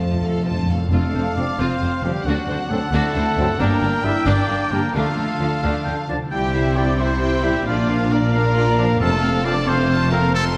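Triumphant and adventurous, this heroic film-score excerpt in F major moves at 89 BPM in 6/8, as a lush bowed violin section carries the melody over a second, very quiet violin line, clear violas, rich distant cellos and smooth double basses, with mellow French horns and a tight, very quiet trombone section holding sustained chords, a ringing fingerpicked concert harp playing arpeggios, hard-mallet timpani opening with a fill before returning at 9.0 seconds, and, from 0.9 seconds, a clear oboe, a dark clarinet and an airy, hollow flute section adding second lines while a solo trumpet punctuates with stabs, all bathed in a scoring-stage reverb as the chords travel from F through D7, Gm, Dm, C and Bb back to F.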